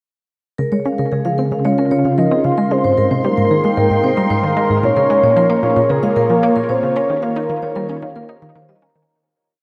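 Bathed in a huge, wet ambient reverb, this short, complete piece of cosmic, hypnotic, sequencer-driven space music moves at 113 BPM in a straight 4/4. A round sawtooth analog pluck repeats a 7-step loop that drifts against the bar, while a metallic, ringing vibraphone played with medium mallets cycles a 9-step arpeggio loop with slow motor vibrato and tape echo. An evolving, detuned resonant pad with lush chorus and filter swells sustains chords from Dbmaj7 through Abmaj7 and Bbm7 to Eb7, and a dark, octave-layered synth lead with chorus, tremolo and tape echo sings arch-shaped motifs until 8.3 seconds, as the recording fades out from 6.3 seconds.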